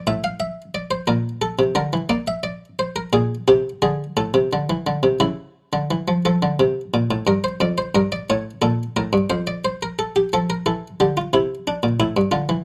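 Classical baroque-style two-part invention in D minor, a joyful, elegant fragment of a longer piece at 59 BPM in a straight 6/8, played by a solo buff-stop harpsichord in the Flemish style whose muted, lute-like, airy plucked tone sits dry and up front under close, detailed microphones with light reverb, ranging from F2 to F5 as it moves through Bb, Asus4 and C#m harmonies before its opening material returns at 10.3 s.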